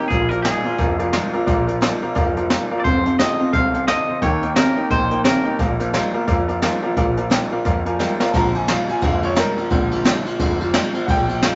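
Upbeat and retro, this rockabilly excerpt swings at 175 BPM in Bb mixolydian. A twangy, clean electric guitar carries the melody until 5.8 s, over a dark, slightly broken-up riff guitar with harmonic tremolo, a very quiet, full-bodied steel-string acoustic, woody pizzicato upright bass with gut strings, and a brushed drum kit with dark cymbals, a high-tuned snare and a boomy kick. A brilliant, slightly detuned upright piano with audible action noise plays a fill and then takes a solo from 8.3 s, all in a wet studio reverb with a softened top end.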